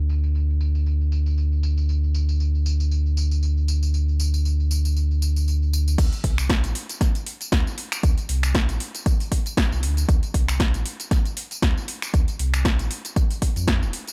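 Deep house in D minor at 117 BPM, this smooth, warm excerpt rolls along in 4/4 with a 16th-note swing of 56%. A deep, full sub bass with an octave layer sits up front from the start, its sine tone given a fast attack, long sustain, tube saturation and sidechain pumping. The deep house drum kit runs throughout with crash cymbal, finger snaps, hi-hat, a punchy snare and tambourine, its metallic hats and overdriven edge sounding as if re-recorded in a large room. A filter sweep builds the opening until the drop at 6.0 seconds, where an overdriven electronic kick drum arrives up front with a layered, deep thump. The mix is dry of reverb yet heavy with echo and shaded by a low-pass filter.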